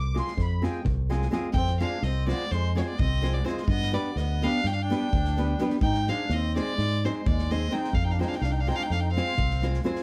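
Fiery yet bittersweet, this short excerpt is Balkan wedding-band folk in a brisk 9/8 at 253 BPM counted in eighths, set in F dorian with a raised fourth over chords moving from Fm through G and Ab and back to Fm. A reedy, sweet accordion with light tremolo tuning takes a solo over the band for the first 1.5 seconds, then carries on as a second line beneath the melody. At 1.5 seconds a single bowed violin takes the tune, played sul tasto with a soft attack and a pure, floating tone. Fingerpicked nylon-string guitar gives full-bodied, deep classical accompaniment, while a growly, punchy fingered electric bass sits up front in its low register. An unplugged drum kit played with bundle sticks adds a punchy kick and a medium-tuned snare. The band is heard from further back in a small room with moderate reverb.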